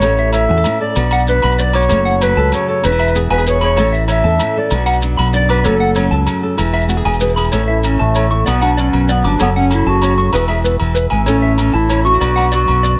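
A dull-topped, small-room sound with moderate spring reverb frames this sunny, danceable highlife guitar band excerpt in A major, moving at 128 BPM in a straight 12/8 over a repeating A, Bm, F#m, E progression. A mellow, distant clarinet carries the melody in a jazz style with vibrato and subtone, over a dark, round, punchy fingered electric bass up front and a fingerpicked flamenco guitar. A slightly broken-up, compressed electric guitar picks arpeggios through analog delay, a clean, percussive tonewheel organ holds sustained chords in the background through a slow rotary speaker, and ringing agogo bells and grainy, close maracas supply the percussion.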